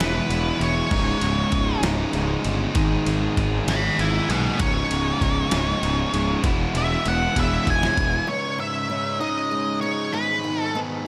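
A dark, octave-fuzz lead guitar sits up front, playing a distorted solo melody from the start of this brooding, cathartic quiet-loud alternative rock excerpt in a straight 6/8. Beneath it, a growly fuzz bass played with the fingers sits up front, while three picked electric guitars churn out riffs in the background: one crunchy and warm with slapback echo, one bright and double-tracked, and one tight and distorted. A gritty, compressed sampler-style drum kit with a thumpy kick, medium-tuned snare, ride and crash drives the opening section over chords moving between E, C#sus2 and G#m, ending in a drum fill at 7.4 seconds. At 8.3 seconds the music drops to half time and a woody, boxy old acoustic guitar with aged strings steps up front, picking arpeggios through tape echo over C#madd9 and G#m as the lead and one crunchy guitar ring on. A moderate concert hall reverb gives the whole mix a big arena sound.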